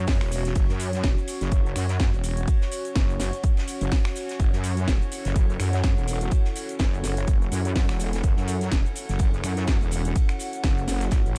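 A heavy, saturated wobble bass sits up front in this bouncy, aggressive bass house excerpt, its detuned sawtooth and sine layers moving between E1 and F#2 with chorus, overdrive and sidechain pumping. A punchy, tape-warm electronic kick drives the 125 BPM groove in 4/4 from 0.1 to 11.2 seconds, with a 56% swing on the sixteenths and the key set in F# minor. Layered on top, a house drum kit adds a cracking snare, metallic hats, finger snaps and shaker, while a small-room acoustic kit played with bundle sticks sits in the background with airy hi-hat, ride cymbal and a medium-tuned snare, its cymbals and hats filtered and pumping. Behind the rhythm, a moody analog pad holds sustained chords from C#4 to C#5, treated with chorus, phaser and pumping. A warbling, lo-fi, nostalgic pad drifts higher, from F#4 to F#5, its mellow tone carried by built-in reverb and phaser, and studio reverb places the parts in a shared space.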